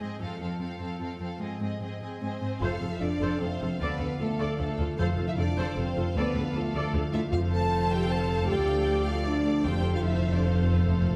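Heroic adventure film score in triple metre, this soaring orchestral passage opens with an intense, distant violin melody above a focused second violin line, smooth, even violas, close cellos carrying the bass and bright, ringing harp arpeggios in the background. During an opening build-up, French horns enter with soft-attack sustained chords at 2.2 s, distant double basses join the bass at 2.6 s, and very quiet, round timpani arrive at 5.0 s before closing with a fill. The whole ensemble sits in a wet recital hall reverb.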